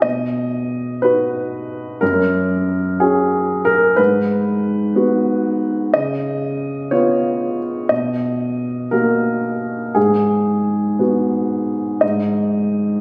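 Loping in 6/8 with uneven beats and a free, rubato push and pull, this neoclassical minimalist piano piece unfolds in a wistful, reflective mood. A lone upright piano carries everything, its woody, warm tone sitting up front and ranging from low bass notes to the upper middle of the keyboard. The harmony drifts from B through F#sus2 to G#m7, leans on C#7 and Bmaj7, returns to G#m7, and settles on a bare G#5 at 12.0 seconds. A moderate concert-hall reverb lends the instrument a lingering, spacious halo, and the performance was captured on a phone in the room. The piano plays for 13.0 seconds in a fragment cut from a longer piece.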